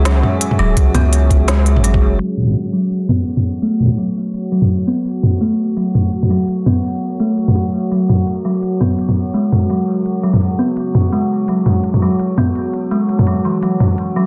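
Spacious and tense, this half-time drum and bass cut in F# minor moves at 168 BPM with a swung feel. It opens on a drop where a deep, sine-toned 808-style bass with tube saturation sits up front until 2.2 seconds, and a gritty, pitched-down, thumpy kick punches in from 0.8 to 2.0 seconds. A woody, hollow kalimba plays airy, dub-echoed arpeggios that carry a filter sweep from 2.2 seconds onward, over a dark, detuned sawtooth pad pumping in the background, an eerie FM drone with chorus, and an overdriven, electronic kit of crisp hats and toms that sounds re-recorded in a large room, all cycling between C#m and F#m in a dense, heavily limited master.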